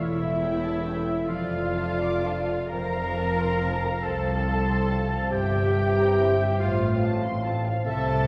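Melancholic and solemn, this short classical passage drifts in a slow, rubato 6/8 at around 40-48 BPM, cut from a longer piece. Muted, con sordino violins carry the melody in the background, veiled and dark with vibrato, while a second violin section sits close with a lush, soft-attacked line. Woodwinds add second lines: an airy large flute ensemble with straight tone, a mellow, vintage-sounding clarinet, and an oboe with light vibrato heard from a distance. Below, a mellow bassoon and a rich, veiled viola section supply accompaniment, a ringing concert harp plays fingerpicked arpeggios, and muted cellos and double basses anchor the bass. A tight, very quiet French horn section holds sustained chords from 0.8 to 7.6 seconds as the harmony moves from A7/E through Dm/F, F and C7/G to F/A. The whole is bathed in a wet concert hall reverb and heard from further back in the room, giving it a soft, dusky glow.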